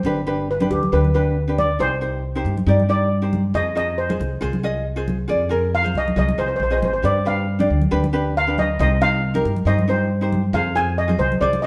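Heard as a band playing live in one stone-walled room with a noticeable reverb, this short, driving and intense calypso cut in C minor at 137 BPM puts a shimmering, mellow steel pan, struck with soft rubber sticks, up front as the lead from 0.5 s, over a growly, woody pizzicato upright bass that sits equally forward, a light fingerpicked ukulele, and bright, damped congas tucked close and dry in the background, all moving through G, Cm, Fm7 and G7 changes.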